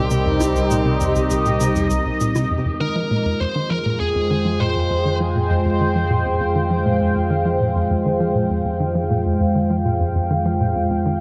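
A sweeping, resonant pad with a detuned, chorused sheen sits up front through the whole of this cosmic, hypnotic fragment of sequencer-driven space music in F minor at 100 BPM, moving from Cm7 to Fmadd9 at 2.5 seconds. Beneath it a tight, punchy sequencer bass riff with a filter pluck drives along over a nasal, pulse-width-modulated analog drone, while a filter sweep colours the synth bass in the opening 2.5 seconds and dry electronic cabasa and bongos tick briefly through tape echo. A bluesy, distorted electric lead guitar states a short picked melody with tape echo until 5.2 seconds, all set in a moderate plate reverb.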